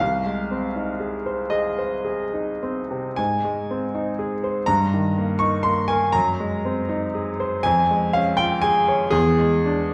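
Tender and dreamy, this short romantic nocturne for solo piano drifts in Ab major at a slow 34-41 BPM in 6/8, its phrasing loose and rubato. A clear baby grand carries everything alone from 0.0 to 9.9 seconds, ranging from C2 up to Db6 with a natural, intimate tone and audible action noise, and it sits up front. The harmony moves from Ab/C through Ab, Eb/G and Ab7/Gb to Db/F, then turns to E7 at 9.1 seconds as the passage breaks off. A recital hall reverb lends a wet bloom, and the listener seems placed further back in the room. Tuned to A4 = 436 Hz, this brief cut from a longer piece feels quietly suspended.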